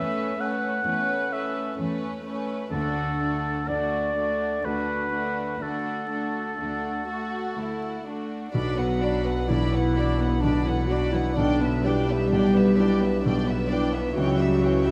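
At a rubato 64 BPM in 3/4, this bittersweet, moving cinematic film score in B minor sets an intimate, close chamber violin section with light vibrato on the melody, over a second line from a pure, floating symphonic violin section and an up-front solo oboe. A clear, open concert grand piano with deep bass and a sul tasto viola section supply accompaniment, while a smooth-topped cello section anchors the low end from the background. The oboe stops at 8.1 s, and at 8.5 s a classical-style solo clarinet takes up a second line as a rich double bass section joins the bass, the harmony moving from Aadd9/E and D to Bm, Em7/B and C#dim, all set in wet scoring stage reverb with a 1.5 s decay and vinyl crackle on this fragment of a longer piece.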